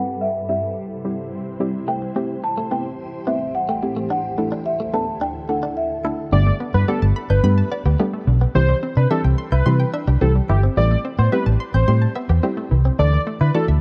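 Wrapped in worn, warbling cassette-tape drift and light digital ambience, this upbeat, summery pop piece in G major at 108 BPM builds through a filter sweep as a woody soft-mallet marimba melody, a gentle round pluck, a cloudy granular pad and a twangy clean electric guitar riff in lush chorus set the scene, then drops at 6.3 seconds into a thick, detuned unison lead, bouncy hollow square-pluck arpeggios with dub echo and a dark, punchy, foam-muted electric bass up front.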